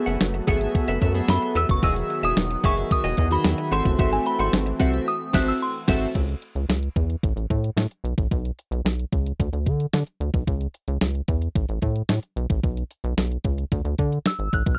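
Early-eighties boogie funk in C# minor at 111 BPM, this funky, late-night excerpt opens with a delicate, tinkling FM synth tine bell carrying the melody up front over a glossy chorused polysynth, a brassy, warbling analog pad in the background and a clean, hollow-bodied semi-hollow guitar riff drenched in lush chorus, all moving through jazzy chords like F#m11 and G#7b9b13 before a band accent near 5.1 s. At 6.2 s the polysynth, pad and guitar drop away, leaving a rubbery, bouncy square-wave bass and a thumpy, overdriven 8-bit drum machine with a fat snare to ride a sparser groove, with the bell returning briefly at 14.3 s. The sound is dry and close, like a 1970s-style studio, and tuned slightly flat to A4 = 438 Hz.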